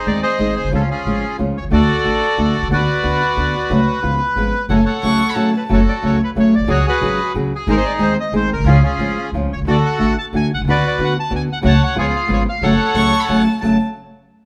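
A live, wet stone-room sound frames this passionate, sultry tango fragment in a rubato 3/4, where an up-front, reedy bandoneon with a vintage, band-limited tone carries the melody over fingerpicked nylon-string guitar with audible finger squeak and a thumpy, woody pizzicato upright bass on gut strings, while a close, bowed violin adds brief expressive lines with vibrato and portamento at 5.0 seconds, just before a short break at 5.4 seconds leads into the second section, and again from 13.0 seconds.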